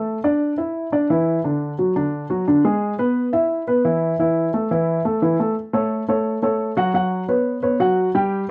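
A home cassette recording with a moderate studio reverb gives this short fragment of a longer piece an intimate, lived-in sound. A solo baby grand piano, dark and mellow with audible action noise and short sustain, sits up front as it plays a sunny, relaxed Latin tune in D major at 174 BPM, moving from Dsus2 through D, E and A5 before turning to F#m at 5.6 seconds and closing on Bsus2.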